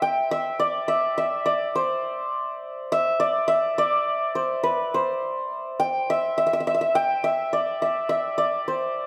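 Set in a straight 3/4 metre at 104 BPM, this short cut from a longer Indian classical performance moves at an unhurried, steady pace in raga Hamsadhwani centred on C. A solo santur carries the whole 9.1 seconds, staying within a compact register from B4 to G5. Its hammered tone is shimmering and ringing, placed up front so each struck note sounds close and clear. A brief opening passage gives way to a new section at 1.8 s that carries on to the end. Moderate recital hall reverb, about 1.5 seconds long, lends the instrument a gentle halo and deepens the meditative, devotional mood.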